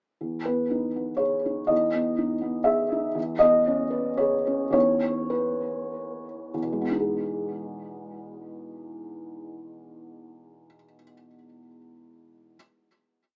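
Hopeful and intimate, this short, complete neoclassical minimalist piano piece moves in a rubato 3/4 that drifts between 93 and 124 BPM, in E major with the tuning set to A4 = 438 Hz. A felt-muted upright piano plays solo from 0.2 to 12.6 seconds, spanning E2 to E5 with a single-line melody and broken chords. Its tone is dark and mellow under thick felt, sitting up front with audible action noise and a touch of tape echo. The harmony rests on Emaj7, shifts to Badd9/E, and the tempo slows before the music settles on a final Emaj7 chord at 6.6 seconds. Light reverb and a rough home demo mix give it a small-speaker sound.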